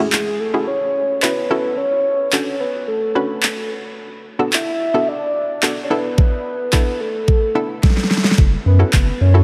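A straight 4/4 pulse at 109 BPM drives this bittersweet yet confident dance-pop passage in F# minor, cut from a longer piece. An electronic, layered pop drum kit sits up front with a knocking kick, fat snare and handclaps, its overdrive adding grit, and it throws in a fill at 7.8 seconds. Above it, a soft, octave-layered synth lead carries the melody with a round, dark triangle tone and a sine sub octave, its vibrato colored by chorus, phaser and delay. A hollow, nasal square-wave pluck bounces underneath with short, detuned notes and a noise layer, pumping under sidechain and thickened by chorus. The chords move from F#m7 through Dmaj7, Bm7 and E7sus4 before returning to F#m7 at 8.4 seconds, where a deep, saturated sub bass arrives up front with a thick, pumping sine tone. A moderate cathedral reverb soaks the mix, giving it a dreamy, spacious glow.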